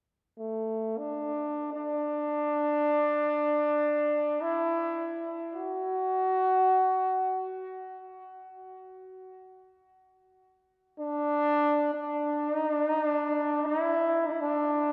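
Spacious and peaceful, this short cut from a longer piece of meditative world music drifts in free time. A lone trombone carries the whole passage, entering at 0.4 seconds and playing solo until 14.9 seconds within a modest range from A3 to F#4. Its tone is bright yet distant, with a pop-style delivery that sits up front even as a tape echo trails behind each phrase. A lush hall reverb with a 3.0-second decay soaks the instrument, giving the recording a dreamy, roomy atmosphere. The pentatonic material and the slightly high tuning lend the meditation a gentle, airy character.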